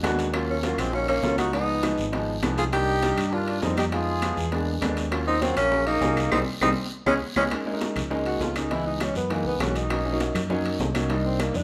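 Piano, fingered electric bass and a full Afro-Cuban percussion section of congas, bongos, timbales, claves and a raspy guiro open this lively, danceable jazz excerpt at 201 BPM, with the grand piano's intimate tone and audible action noise and the bass's direct, amped sound anchoring the groove. At 0.5 seconds a breathy, mellow tenor saxophone takes the melody up front with vibrato and scooped notes, while a bright, punchy trombone plays a distant second line in the background until 7.4 seconds. After a band accent and drum fill, the saxophone solos over shifting jazz harmony from 7.5 seconds, all in a moderate studio reverb that captures the band playing live in one room.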